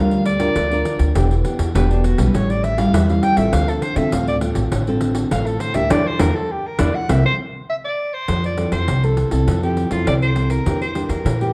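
A mellow, distant soprano saxophone solos in a jazz style with light vibrato and scooped notes over fingerpicked, full-bodied nylon-string guitar, a woody pizzicato upright bass sitting up front and a jingly pandeiro played with hard hands, in this lively, joyful samba and choro fragment at 101 BPM that shifts from D minor to F major at 8.3 s after a band accent from 5.9 s, all bathed in wet large-studio reverb with a dark production.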